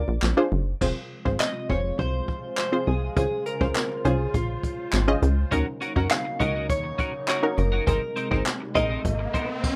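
A plucky analog bass sits up front in this energetic, confident dance-pop excerpt at 102 BPM, its punchy, funky tone built from sawtooth, square and triangle waves with a wave-folded edge and a fast filter pluck that decays, all pumping against the sidechain. Punchy chord stabs of detuned sawtooth and pulse waves ride alongside it with chorus and the same pumping, while a clean, direct-recorded electric guitar carries the melody through lush chorus and digital delay. A jazz brush drum kit enters at 0.2 seconds with a boomy kick, high-tuned snare, dark cymbals, hi-hat, crash and handclaps, sounding acoustic and rolled-off on top. An evolving, warbling vintage pad with a resonant filter swell sits low in the mix behind the harmony, which moves from Fm through Dbmaj7 and Ebm7 to Abadd9. A compressed twelve-string electric guitar adds a picked riff from 5.5 seconds, and an electronic riser arrives at 8.7 seconds, all within a light reverb and a rough home-demo mix.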